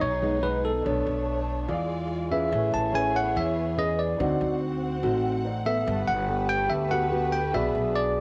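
Intimate and smooth, this bossa nova excerpt at 144 BPM in E major features a bright, bell-like tine electric piano melody up front, with a dark, breathy trombone whispering a second line in the background, thumb-plucked nylon-string guitar with finger squeak, a very quiet, clear grand piano, lush bowed violins holding sustained chords, and a woody, thumpy pizzicato upright bass, while plate reverb bathes the electric piano and violins and cassette tape colours the electric piano, trombone, guitar and violins inside a moderate, homey booth ambience.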